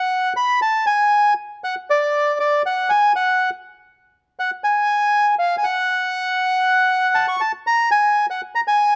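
A lone bandoneon opens this brief tango excerpt, playing solo from the first moment in a sultry, tense mood. Its reedy tone sits up front in the mix, carrying a cassette-tape character as it moves through a high register between D5 and C#6. The music is set in F# harmonic minor at 120 BPM in 4/4, but the feel is rubato, so the pulse breathes freely rather than marking strict time. A moderate spring reverb and a small room ambience surround the instrument, giving the home cassette recording an intimate, slightly worn quality. After the opening material, a new section arrives at 7.7 seconds, and the passage ends at 9.0 seconds as a fragment cut from a longer piece.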